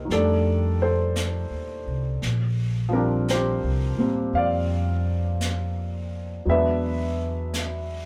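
Late-night and tender, this brief cut from a slow jazz ballad at 56 BPM with a gentle swing features a clear, up-front concert grand piano voicing chords such as F13, Bb69 and E9, a woody, growly upright bass played pizzicato, and a distant, roomy brush drum kit on brushed snare and hi-hat, all captured live together in one room with moderate studio reverb.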